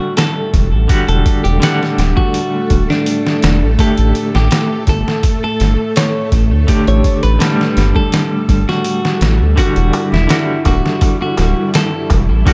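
Trip hop with a smoky, dark mood, built on a gritty, pitched-down sampler-style drum kit with a thumpy kick, sitting up front beside a round, deep analog bass that mixes sawtooth and sine with ring modulation. A twangy, compressed clean electric guitar carries the melody through tape echo, while a bright semi-hollow electric guitar with tremolo and tape echo accompanies over mellow string-machine cellos holding sustained chords in the background, moving from Em9 to A7sus4 and back. At 9.6 seconds a very quiet clay-shell darbuka joins in this echo-heavy, nearly dry excerpt cut from a longer piece.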